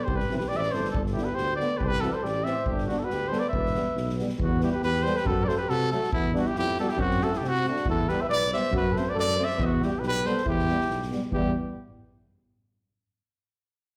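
Heard through a venue's sound system with club reverb and a small room's ambience, this restless, fiery Balkan brass band passage in E minor drives along at 139 BPM in a straight 2/4, moving from C and G into an Em and F#dim alternation after about 4.4 seconds. An up-front trumpet with light vibrato carries the melody, joined by a close-miked, mellow flugelhorn on a second line, both touched with slapback echo, while a tuba holds down the bass from 0.1 seconds. A distant, roomy French horn and a punchy euphonium with light vibrato fill in the accompaniment from 0.3 seconds, both with slapback echo, and an airy street-band drum kit adds a boomy kick and medium-tuned snare.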